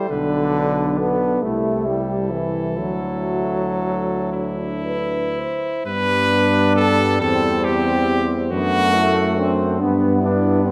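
A clear, close-miked cornet sings the lyrical melody up front in this hymn-like classical brass band fragment, moving in a rubato 6/8 and falling silent at 9.8 s. Behind it, a French horn section with a smooth top carries a second line while a trombone section adds accompaniment, both with light vibrato and set in the background. A soft-attack solo trombone fills out the harmony, and a warm tuba anchors the bass up front, all bathed in the wet reverb of a concert hall.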